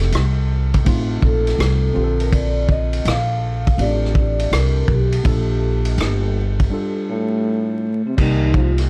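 A dry, gritty recording dusted with vinyl crackle carries this short, nocturnal and smoky jazz-hop excerpt in a swung 4/4, where a mellow soft-mallet vibraphone with slow motor vibrato sings the melody over a worn, slightly out-of-tune tine electric piano, a woody pizzicato upright bass and a punchy vintage drum kit with dark cymbals, rim clicks and hi-hat, before a distant, breathy trombone slips in with a whispered second line at 7.1 seconds, during a break that runs from 6.7 to 8.2 seconds.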